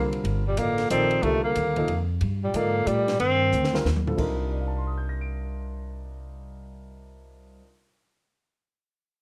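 A breathy, whispered tenor saxophone leads this cool, intense modal jazz excerpt in a swinging three, carrying the melody up front with subtone and scooped notes, while a dark, distant bass clarinet shades a second line beneath it. A natural-sounding grand piano accompanies, with a woody pizzicato upright bass and a dry cocktail drum kit of dark cymbals, high-tuned snare and punchy kick that plays a fill from 3.5 seconds. The horns drop out at 3.8 seconds, and piano and bass carry on into the next section in a light reverb.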